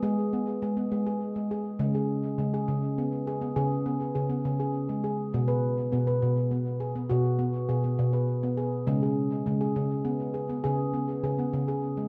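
A wet recital hall reverb surrounds a solo handpan, which sits up front in this hypnotic, meditative world excerpt at 68 BPM in a straight 6/8. The dark, ringing nitrided-steel tones, struck with sharp finger strokes across a range of B2 to B4, trail into a diffuse ambient delay. Over 12.1 seconds the harmony moves from G#m to C#5, then B5, and back to C#5.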